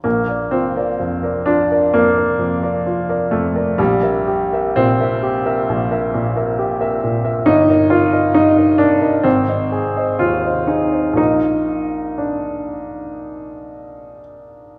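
A romantic classical character piece for solo upright piano, this lyrical, hopeful fragment moves in a slow 4/4 with free, elastic rubato. The piano's woody, polished tone sounds clear and present, spanning low bass to bright upper notes across its 14.8 seconds. A recital hall's generous reverb surrounds the instrument, heard from further back in the room, as the harmony drifts through gentle shifts and settles home on its opening chord near 11.2 seconds.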